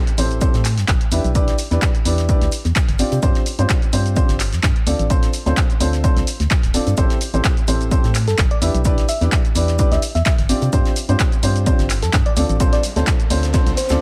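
Piano house at 128 BPM in A minor, energetic and soulful, with a light 16th-note swing and a dry sound. A woody, boxy upright piano carries the riff from 0.2 seconds through Am7, Em7, G7sus4 and Dm7, pumping with sidechain and trailing tape echo, while a hollow, organ-like FM bass with a dark, percussive attack pumps beneath it. The drums stack a punchy analog machine with handclaps, hi-hat and shaker, a very quiet damped 70s kit with a fat snare, and an up-front electronic kick that enters at 0.4 seconds. At 8.3 seconds a bell-like FM electric piano adds a sparkling yet mellow melody, coloured by chorus and tape echo. A very quiet electronic riser appears at 12.1 seconds as this section of a longer piece runs out.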